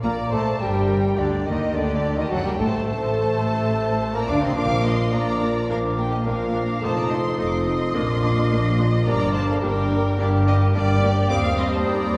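In a straight 4/4 at 107 BPM, this quick classical-period orchestral passage, cut from a longer piece, feels dramatic and restless as its harmony moves from Gm through F#dim and F7 before landing on Cm/Eb. A focused, distant chamber violin section carries the melody with vibrato. An intense, lush symphonic violin section, a pure silver flute with a soft attack and a smooth-topped clarinet entering at 0.1 s weave second lines above a very quiet, even viola section and a background bassoon with light vibrato. Mellow, loose French horns hold sustained chords, while a close, rich cello section joins a clear chamber double bass section on the bass, the orchestra sitting in the wet reverb of a church or concert hall.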